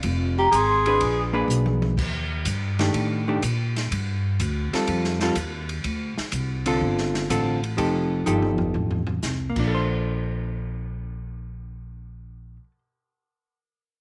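A woody, pizzicato upright bass and an airy acoustic drum kit open this relaxed small-group swing cut, a short piece of a longer work in Bb major at 124 BPM with a firm swing on the eighth notes. Almost at once, from 0.4 s, a mellow vibraphone with soft mallets and fast motor vibrato rings out a brief high phrase with a slapback echo, alongside a whispered, breathy tenor saxophone with scooped notes that drops out by 1.3 s. A dark, clean hollow-body electric guitar enters at 0.9 s and carries the picked accompaniment up front until about 12.8 s, moving through harmonies such as Ebmaj7#11, G9sus4 and Dm7 before settling on Bbmaj9. The drums, with dark cymbals, a medium-tuned snare and a boomy kick, add two fills and stop at 9.6 s, while the steel-string bass, given a touch of transformer saturation, keeps its bright, up-front tone until about 12.6 s. A light reverb and small room ambience give the whole a polished, intimate feel.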